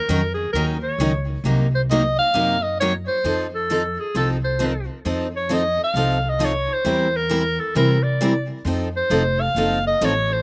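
Recorded dry and outdoors with little reverb, this fiery, swinging passage of jazz manouche at 133 BPM is cut from a longer piece and rides over a harmony moving from Ebm7 through Cm7b5 to F7. A bright, punchy clarinet carries the solo melody up front with vibrato and a slapback echo, while two picked steel-string acoustic guitars, one concert-style and the other a full-bodied jumbo with fresh strings sitting in the background, share the accompaniment with the same echo and audible finger squeak. Underneath, a woody, thumpy upright bass with gut strings plays pizzicato up front.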